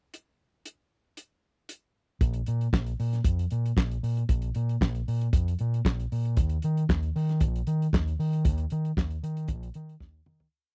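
Glamorous and danceable, this short disco piece moves at 115 BPM in a straight 4/4, tuned to A4 = 441 Hz. A warm soul drum kit opens with a pickup bar on its own, its muffled, lo-fi tone and rolled-off top shaping the four-on-the-floor beat, with a tight kick, sixteenth-note hi-hats, toms, and a fat snare layered with handclaps. At 2.2 seconds an overdriven fingered electric bass joins for the groove, playing a dark, round octave disco line with slides between Bb1 and Eb3. Both parts sit up front in a dry, close 1970s-style studio sound with barely any reverb. The music fades out from 8.4 seconds, and a drum fill at 10.0 seconds closes the piece.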